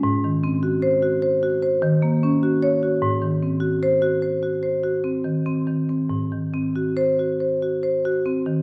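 Set in a flexible 5/4 that moves between 91 and 102 BPM, the rubato pulse gives this brief passage of a contemporary classical piece for solo marimba a flowing feel. The marimba, struck with medium hard mallets, carries everything alone across its 8.6 seconds, ranging from Ab2 up to Db5 with a dark, smooth tone that sits up front. The harmony moves from Ab7 to Ebm7 at 1.8 seconds and returns to Ab7 at 3.0 seconds, lending the passage a warm, flowing mood. The instrument is tuned to A4 = 444 Hz. A wet recital hall reverb with a 1.3-second decay surrounds the playing, and the listening position further back in the room adds a sense of space. The recording is a short cut from a longer piece.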